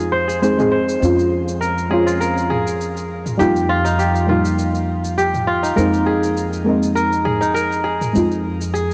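A fingerpicked kora sits up front in this meditative, earthy organic downtempo fragment, its crisp, ringing arpeggios softened by a low-pass filter and trailed by tape echo and shimmer reverb. Beneath it, a deep, mellow chord stab with a fast attack and decaying tail adds a soft, warbling, vintage tone, its detuned layers thickened by chorus and given the same cassette, tape echo and shimmer treatment. A pizzicato upright bass, woody and dark, holds a low F under the harmony, which moves from Fm7 through Bbm7/F, Ebadd9/F and Abadd9/F before returning to Fm7 at 8.2 seconds. Quiet, tape-warm electronic shaker and toms carry a gently swung 16th-note feel in their own studio reverb. Every part plays through the full 8.9 seconds of this cut from a longer piece, set in a moderately lush hall and captured as a home recording on cassette.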